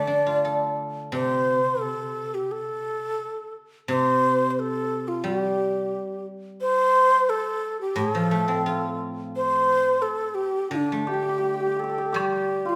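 Graceful and wistful, this fragment of a longer piece is Chinese traditional chamber music in 4/4, played with a free, rubato feel. A breathy bamboo xiao carries the melody up front, its end-blown tone tongued and colored with vibrato. Beneath it, a guzheng played with fingerpicks provides the accompaniment throughout, its silvery strings ringing close at hand. A bright hammered dulcimer adds a shimmering second line from 11.1 s, and a dry woodblock taps briefly in the background at 12.2 s. A moderate recital-hall reverb gives the ensemble the resonance of a church or concert hall.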